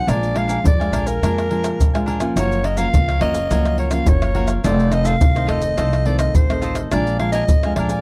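A growling soprano saxophone carries a yearning, raspy melody with vibrato and scooped notes over crisp picked cavaquinho and a fingerpicked classical nylon-string guitar, joined almost at once by a woody, thumpy upright bass and up-front, hard-handed maracas, surdo, pandeiro and tamborim. This lively samba and choro excerpt moves at 105 BPM in a straight 4/4, circling through Bb7, Gbmaj7 and F7. The dry, close 1970s-style studio sound keeps the percussion tight and the gut-string bass dark.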